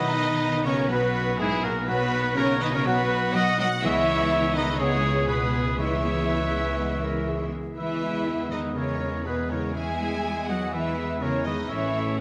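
Trumpet stabs and a rich cello section ring out above a soaring, triumphant orchestral cue in heroic adventure film-score style, moving at 123 BPM in B major through a B, C#m7, E and A progression in a 12.2-second excerpt cut from a longer piece. A rich, focused studio violin section carries the melody, shadowed by bright background violins, a pure, very quiet flute and a distant oboe, while lush violas, mellow close-miked French horns holding sustained chords, ringing thumb-plucked harp arpeggios and woody double basses fill out the texture. A soft-attack clarinet adds a brief second line from 6.3 to 7.8 seconds, all set in a moderate concert-hall reverb.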